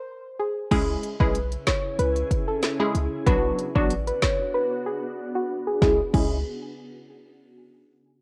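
Dancehall with a bouncy, tough mood, this short cut from a longer piece opens with a soft, round pluck carrying the melody alone until the bass, drums and chord stab arrive at 0.7 seconds. That lead sits up front, gently wave-folded and dark, coloured by chorus, analog delay and a low-pass filter. A crisp, detuned wavetable chord stab shares the front of the mix, bright and digital with a phaser, while a deep, boomy 808-style bass with a sine body and noise layer stays in the background. The electronic afro-pop kit is prominent, with a deep kick, woody snare, crisp hats, rim clicks and a crash cymbal. From 1.5 seconds a glassy, ethereal FM pad holds sustained chords with ensemble chorus, reverb and sidechain pumping, as a filter sweep runs beneath the harmony moving from C#m to Bm and a break arrives at 4.5 seconds. The whole piece has the character of a home recording on cassette with digital ambience.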